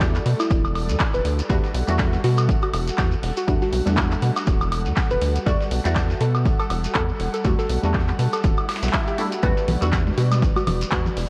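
A punchy, tape-warm electronic kick drives this late-night deep house cut at 121 BPM in 4/4, with a swung 16th feel from a punchy analog drum machine's handclaps, hi-hat and woodblock, a very quiet gritty sampler-style kit with a fat snare, a grainy shekere in the background, and damped, high-tuned congas arriving at 9.7 seconds. Up front, a rubbery, hollow square bass pumps against the kick beneath an airy, breathy pad and filtered dub chord stabs, muted and detuned with phaser, lush chorus and tape echo, all resting on an Em11 chord in E minor. A soft, round pluck melody with chorus and tape echo enters at 0.4 seconds, an electronic swell enters in the background at 8.6 seconds, and the dreamy mix is soaked in church reverb with a cassette-tape character.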